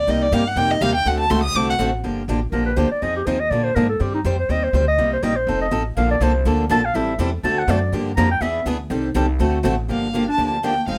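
A dark, bowed violin opens this fiery, swinging gypsy-jazz excerpt in G minor, its expressive line sung with vibrato and portamento over a woody, thumpy pizzicato upright bass at a racing 245 BPM. Two picked steel-string acoustic guitars carry the accompaniment: one a boxy parlour guitar up front with audible finger squeak, the other a bright concert guitar sitting in the background. At 2.5 seconds a breathy clarinet enters and takes the solo, its close-miked subtone and scooped notes giving the line a jazz-style intimacy. The violin returns at 9.9 seconds as the harmony lands back on Gm7 and a new section begins. Light reverb keeps the small acoustic string band sounding close and lively.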